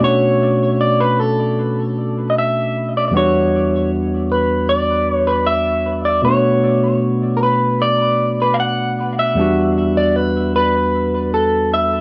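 This reggae passage, cut from a longer piece, moves at an unhurried 77 BPM in 4/4 with a straight feel, settling into a longing, bittersweet mood in B minor. An electric guitar through a small old amp carries the melody up front throughout the 12 seconds, its fingered tone twangy and slightly broken-up, with a lo-fi edge and a trail of tape echo. Beneath it, a barky tine electric piano supplies the accompaniment from the low register up into the middle, bright and clean through a combo amp and also placed up front. The harmony alternates between Bm7 and Em7, changing at roughly 3.1, 6.3 and 9.4 seconds. A light reverb and digital ambience give the two parts a modest sense of space.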